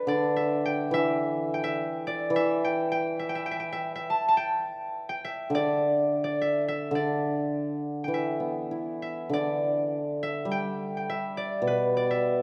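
Chinese traditional chamber music, graceful and festive in a rubato 2/4 at 96-109 BPM, with an up-front concert harp carrying the fingerpicked, ringing melody while a shimmering hammered dulcimer accompanies in a lower register from 0.1 seconds, both set in a moderate concert hall reverb as this short section cut from a longer piece moves into a new passage at 8.1 seconds.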